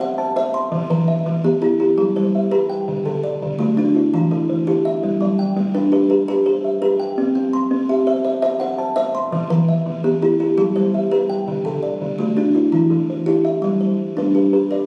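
Set in a rolling 12/8 metre with a straight feel, this southern African traditional piece moves with a steady, hypnotic pulse and a rippling mood. Two kalimbas play arpeggios together from the start to the end at 14.9 seconds, both sitting up front with a woody, hollow-box character and a soft fingertip pluck. One kalimba carries a distinctive buzzing rattle and a darker, smoother tone, while the other reaches slightly higher and sounds mellow. The harmony circles through C, E minor, G and D, returning to G as the passage breaks off, since this is cut from a longer piece. The sound is that of a phone held in a resonant recital hall, with a lingering reverb and noticeable compression.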